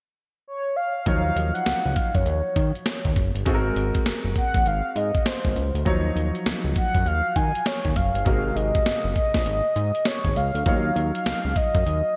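A mellow, horn-like synth lead opens this slick, bouncy slice of new jack swing R&B at 0.5 s, round and vintage in tone with a warbling chorus and vibrato, carrying the melody on its own briefly. At 1.1 s the band arrives together: a breakbeat sampler-style drum kit with a thumpy kick, medium-tuned snare and hi-hat, gritty and compressed with gated reverb; a fat analog bass, thick and detuned with a wave-folded edge and filter sweep; and a clear, polished baby grand piano accompanying beneath, touched with analog chorus. The groove sits at 100 BPM in 4/4 with a 63% swing on the sixteenths, giving it a bounce. The harmony rocks between Ebm9 and Ab9 in Eb dorian, with the drums, bass and lead all placed up front. A lush hall reverb and bright 1980s-style digital production frame this short excerpt cut from a longer piece.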